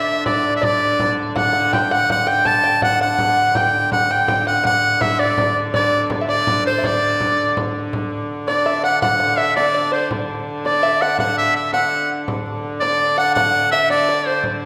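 A wet, reverberant hall sound surrounds this festive, ancient-feeling medieval dance in D mixolydian, moving at 110 BPM in a straight 6/8. Up front, a bright shawm with light vibrato carries the folk-style melody, while a twangy, plunky fingerpicked open-back banjo plays a second line in the same range, a rich, even hurdy-gurdy holds a D3 drone, and a close, warm frame drum adds percussion. The passage is cut from a longer piece, with a new section arriving at 7.9 seconds.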